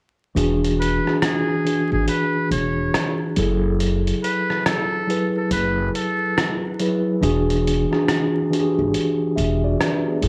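Reflective and melancholic, this lo-fi hip hop excerpt drifts at a swung 70 BPM in 4/4 over E9 and F#m9 chords, with a mellow tine electric piano colored by cassette tape and a low-pass filter, a woody, thumpy pizzicato upright bass on gut strings, and a muffled, compressed sampler-style kit of hi-hat and rim click, while a buzzy, breathy muted trumpet with light vibrato and scooped notes plays a jazz solo from 0.8 to 6.6 seconds, all set in a small room with vinyl crackle.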